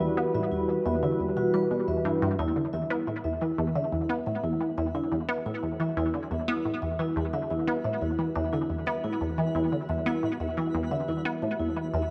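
A squelchy, detuned sawtooth blip pluck plays a bright, up-front riff over an Emadd9 chord, alongside mellow soft-mallet vibraphone arpeggios ringing through tape echo and an evolving, chorused sawtooth pad sustaining chords in the background. This is mysterious, expansive, sequencer-driven ambient space music in E minor at 88 BPM, bathed in a wet plate reverb. From 3.5 seconds a sparkling granular texture with an octave-up shimmer fades in softly behind the other parts in this excerpt cut from a longer piece.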